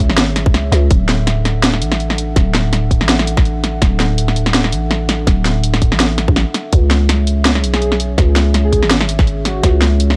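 A tense, heavy half-time drum and bass passage at 165 BPM opens with a tight, up-front electronic kick, a cracking snare and hi-hat, and a growling, buzzy 808-style bass beneath a dark, detuned analog pad carrying chorus, 12-bit sampler grit and sidechain pumping over C#m and D chords, before an airy, dreamy lead with chorus and tape echo drifts in the background from 7.7 to 9.7 seconds, all captured with a dry, gritty cassette-tape character.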